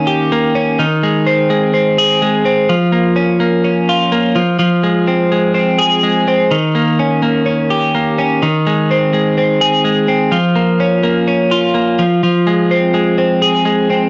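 A bright, twangy twelve-string electric guitar plays alone and up front for the full 14.1 seconds, its clean picked tone compressed and colored by cassette tape. This wistful, restless indie pop fragment, cut from a longer piece, cycles twice through Eb7, Ab, Bbm and Fm in a straight 4/4 feel. A wet studio reverb surrounds the guitar, while the home cassette recording leaves the top end muffled.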